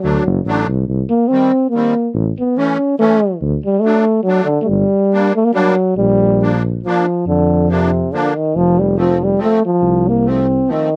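A warm, vintage-toned euphonium carries the melody up front in this festive, bouncy alpine folk dance, a fragment cut from a longer piece in a swung 3/4 at 141 BPM. A reedy, shimmering musette accordion supplies the accompaniment while a mellow tuba with light vibrato holds down the bass, the tune moving from G harmonic minor into Bb major at 6.0 s. The sound is dry and close, with the feel of a 1970s studio recording.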